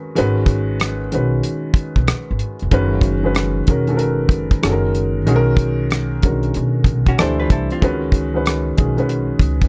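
A damped 70s drum kit sits up front in this late-night, soulful neo-soul R&B groove at 94 BPM in 4/4, its dry, airy hi-hat, tight kick and rim click carrying a swung 16th feel in C# dorian. An intimate concert grand piano with audible action noise and deep bass accompanies through chords such as G#m7, Bmaj9 and C#9sus4, over woody pizzicato upright bass. A clean, picked hollow-body jazz guitar adds a brief second line from 7.1 to 8.0 seconds, and the dark production carries little reverb in a clip cut from a longer piece.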